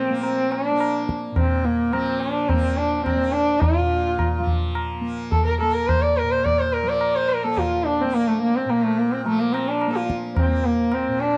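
A dry, close 1970s-style studio sound frames this devotional, meditative Hindustani fragment in raga hamsadhwani, cut from a longer piece, where a single bowed sarangi carries the woody, gliding melody with light vibrato, portamento and sympathetic strings, set up front over a softly plucked, buzzing tanpura drone and a high-tuned tabla with a short, close ring that plays from 0.2 to 11.1 seconds.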